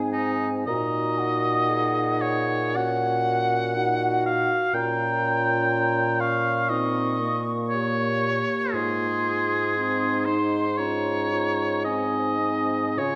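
A warm, lyrical mood settles over this slow romantic movement for wind quintet, cut from a longer piece and moving at 58 BPM in 4/4 with an uneven, rubato pulse. The silver concert flute carries the melody high in its range, its pure, hollow tone touched with vibrato and heard close. Just after the opening, the oboe enters at 0.1 seconds with a second line that sits up front, its clear, punchy sound carrying light vibrato. Beneath them, the clarinet and French horn supply accompaniment from the background, the clarinet clear and present, the horn mellow with a gentle vibrato, while the dark, smooth-topped bassoon anchors the bass up front. The harmony drifts from Ab through Gb/Bb and Eb7/Bb before returning to Ab, then passes through Db/Ab and settles on Ab once more, all heard within a recital hall whose wet reverb lingers around the ensemble.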